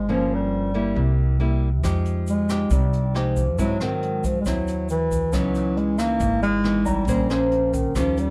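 Bossa nova at 137 BPM in Ab major, smooth and intimate, with a mellow bass clarinet carrying the melody up front in a jazz style, its scooped notes and light vibrato set in plate reverb, over fingerpicked nylon-string guitar and woody pizzicato upright bass. Brushed drums with a boomy kick and rim clicks join at 1.8 s alongside a grainy egg shaker in the background, while a concert grand piano adds brief high touches, its action noise audible, at the very start and again around 6.9 s. The production is dark and warm in a moderate studio room, moving through chords such as Fm9, Ab7b13 and Dbm9 in this short cut from a longer piece.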